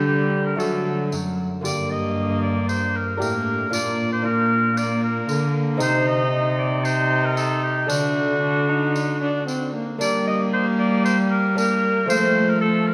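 A consort of oboe, lute, viola and cello opens this short passage cut from a longer piece, a rustic yet courtly Renaissance-style dance in G minor at 115 BPM in a straight 4/4, tuned to A4 = 436 Hz. The oboe carries the melody up front with a light vibrato, its warm tone sounding distant and roomy. Beneath it, a bowed viola with a reedy gut-string timbre and a rich, bowed cello on the bass line give the period ensemble its weight, while a mellow, fingerpicked lute with double gut strings sits delicately in the background. A bright, jingly tambourine joins at 0.6 seconds and stops at 12.3 seconds, heard from afar in a large room. The harmony moves from a suspended D through G minor, B-flat, C minor and D before returning to G minor and touching F at the close. A lush church reverb and a dark production bathe the whole consort in a resonant, candlelit glow.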